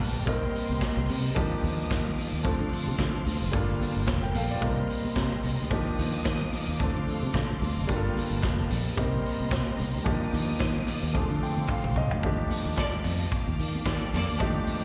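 Glamorous and sultry, this disco excerpt moves at 110 BPM with a light sixteenth-note swing, built on a Cm7, Ebmaj9, Dm7, Gm9 cycle that lands on Ebmaj9#11 at 12.2 seconds. A growly, bright fingered electric bass and a punchy, mid-forward vintage drum kit drive the groove beneath an intimate grand piano with audible action noise and slapback echo, while a smooth-topped studio string section holds lush bowed chords and soft-handed congas and crisp group handclaps sit very quiet in the mix. Piano and drum fills lead into the closing passage, where a biting, distant second string line with slapback echo enters at 12.8 seconds, all heard through a venue's PA with recital hall reverb.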